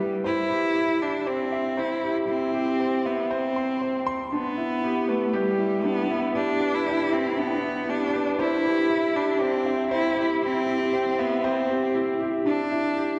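Bathed in a wet concert-hall reverb with a dark, warm production, this intimate, cinematic electronica fragment, cut from a longer piece, builds up over its opening 12.5 seconds as a single up-front bowed cello sings a rich, nasal, boxy melody with vibrato, soft attacks and expressive portamento over a warm grand piano riff, both playing throughout, as the harmony alternates between C and Em7.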